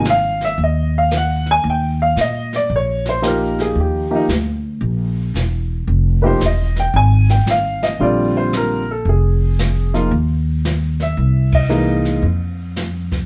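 Recorded live in one room with moderate studio reverb, this sophisticated jazz piano trio excerpt swings easily in 4/4 at 113 BPM with a warm, natural glow. An upright piano with a woody, long-sustaining tone carries the melody up front, joined by equally present pizzicato upright bass on steel strings, while a brushed drum kit with dark cymbals and a boomy kick sits further back. The harmony moves from Ebadd9 through Fm7 and Bb13 to C7alt, the band hits an accent at 11.4 seconds, and the piano stops at 12.2 seconds as the bass carries on briefly to 13.2 and the drums to 13.3.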